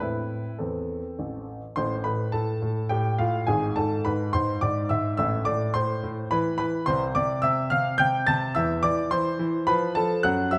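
Graceful and cheerful, this short passage from a classical-period piano sonatina in A minor moves at 106 BPM in a straight 3/4, with a solo grand piano, clear, present and up front with long sustain, ranging from G#1 to A6 in a wet recital-hall reverb with a gently rounded top, as the harmony travels from Am through E7/G# and C/E to land on F at 9.7 seconds.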